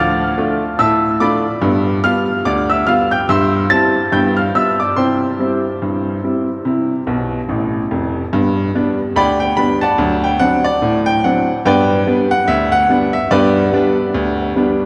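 A bright, woody upright piano plays solo through this jaunty, cheerful ragtime excerpt in a lightly swung 2/4, moving from its opening strain to a new section at 8.3 seconds after a short fill, its up-front vintage tone blooming in the long reverb of a cathedral-like hall.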